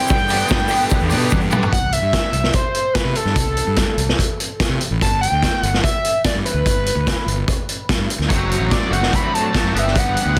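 A straight 4/4 groove at 146 BPM drives this wistful, carefree indie rock excerpt in G major, where a saturated, up-front vintage drum kit with a tight kick and rolled-off top and a growly fuzz bass carry a screaming, guitar-like wave-folded synth lead with vibrato and analog delay, while a crunchy chorused guitar, a lo-fi garage guitar with tremolo and a grainy tube shaker fill the opening until a drum fill at 1.3 seconds leads into a new section at 1.7 seconds, and both guitars return at 8.3 seconds, all inside a dense, heavily limited modern mix with light reverb.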